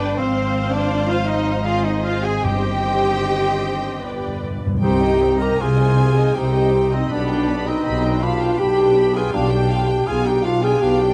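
An elegiac, melancholic slow romantic movement for symphony orchestra in C minor and 3/4, unfolding with rubato at around 74-83 BPM. From the start, a smooth studio violin section carries the melody over second lines from a mellow cor anglais, a warm clarinet and a focused, distant chamber violin section, with lush violas in accompaniment, a prominent French horn section holding sustained chords, and a bass of clear double basses and expressive cellos with portamento. Timpani enter at 2.4 seconds with a fill just before 4.8 seconds, when a hollow silver flute, a bright, tight trombone section and a smooth-topped tuba join for the closing passage, all in light reverb with close, detailed presence.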